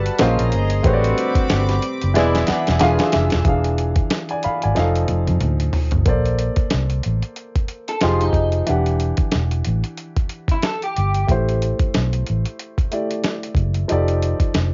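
A hazy home cassette recording with light reverb and a muffled top end sets a sultry, late-night R&B and neo-soul mood in this short section cut from a longer piece. Up front, a gritty, compressed sampler-style drum kit with a thumpy kick and medium-tuned snare sways with a lazy sixteenth-note swing, while a dark, foam-muted fingered electric bass adds round, punchy low notes. A baby grand piano with short sustain carries the accompaniment throughout and slips in fills alongside the drums. Across the opening 3.5 seconds, a shimmering, retro pulse-width pad holds slow-attack chords under brief, punchy stabs from a horn section with light vibrato. From 7.9 s, an electric guitar through a small old amp, slightly broken-up and bathed in lush chorus, adds a picked second line over jazzy minor-ninth and altered-dominant harmony.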